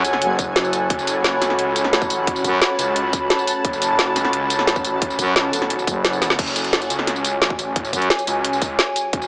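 Heard through a small-speaker sound in a lush hall reverb, this aggressive, mechanical dark technical drum and bass drop is cut from a longer piece, with an up-front drum kit of woody snare, metallic hats, crash and tambourine joined by a tight electronic kick from 0.4 s and a drum fill at 6.2 s. A growling FM bass sits up front in two bursts, beside a saturated, detuned saw bass with chorus and overdrive that holds steady underneath. Overhead, a moody analog pad with ring modulation and a cloudy granular pad that stops at 6.4 s both pump against the beat, sustaining an F#madd9 chord.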